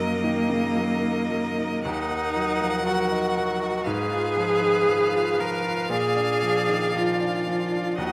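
Set in a reverberant recital hall, this brief section of a slow, rubato romantic movement for piano quartet sounds yearning and elegiac. A focused violin with vibrato carries the melody high above, while an up-front cello with a smooth, even tone sings a prominent second line. A distant viola and an intimate baby grand piano, its action noise audible and its notes sustaining long, supply the accompaniment throughout the 8.1 seconds.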